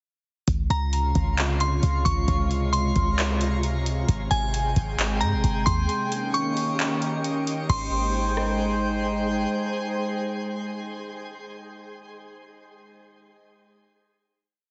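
A glassy synth bell loops a sparse, crystalline melody over a warbling, nostalgic tape-like pad in this blissful, floating cloud-rap piece at 133 BPM in a half-time feel, where a booming analog drum machine with a deep kick and metallic hats and a clean, boomy 808-style bass with long sliding sub notes drop out by 9.5 seconds, leaving the pad and a twinkling granular shimmer to hold the final Abmaj7 chord through a heavily compressed, radio-like sound.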